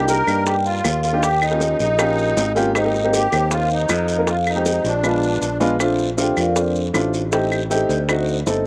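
Danceable and lively, this Afro-Cuban jazz passage, cut from a longer piece, moves in a straight 4/4 over rich extended chords. A ringing, metallic vibraphone carries the melody with medium mallets, while a reedy musette accordion with a shimmering tuning adds a second line beneath it before dropping away at 5.6 seconds. Up front, a woody upright piano with long sustain supplies the accompaniment, and a bright, growly fingered electric bass anchors the low end. The percussion is tight, high-tuned bongos in the background, woody claves, a raspy guiro and grainy, mellow maracas, all acoustic, with the bongos and maracas heard close. The sound is dry and outdoors, with slapback echo touching the accordion, piano and bongos, and the vibraphone takes a solo at 5.8 seconds as the harmony shifts into a new section.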